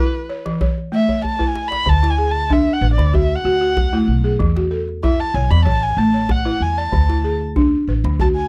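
A straight 4/4 pulse at 95 BPM drives this short, hypnotic and joyful cut from a longer piece of West African string and xylophone music, set in D lydian and tuned slightly high to A4 = 441 Hz. The djembe keeps time throughout with tight, cracking strokes from hard hands and adds a fill between 1.1 and 1.9 seconds, just before a pizzicato upright bass enters at 1.9 seconds with thumpy gut-string tone. Up front, a buzzing balafon played with rubber mallets spins woody, airy arpeggios beneath the harmony as it moves from E5 through A, D and E. A dark erhu carries the melody as a solo from start to finish, its soft-attack bowing shaded with vibrato and portamento for an intimate, close feel. The sound is dry and close, in the manner of a 1970s studio, with little reverb.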